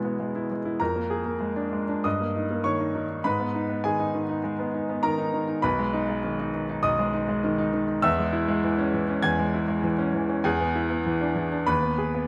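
A clear baby grand piano plays alone through this passionate, stormy excerpt of a classical virtuoso study, its rubato phrasing spanning B1 to G#6 with intimate, up-front presence, audible action noise and long sustain, set in a moderate concert hall reverb captured by close, detailed microphones as the harmony moves from E through G#m toward E7.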